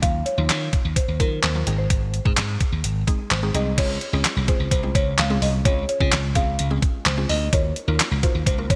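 A buzzing marimba played with soft mallets leads this euphoric, upbeat dance-pop excerpt at 128 BPM in Db major, carrying a dark, smooth melody with delay over a woody, FM-style synth pluck whose chorus, phaser and sidechain pumping lend the accompaniment a shimmering, breathing motion. Up front, a bright, punchy slap bass pumps with the sidechain beneath a detuned 8-bit drum machine of thumpy kick, medium-tuned snare, handclaps, hi-hat and crash, sounding sampler-like and tape-warm. The bright 1980s-style digital production sits in light reverb as the chords move from Ebmadd9 to Ab, then to Dbmaj7 at 3.8 seconds, before returning to Ebmadd9 at 7.5 seconds.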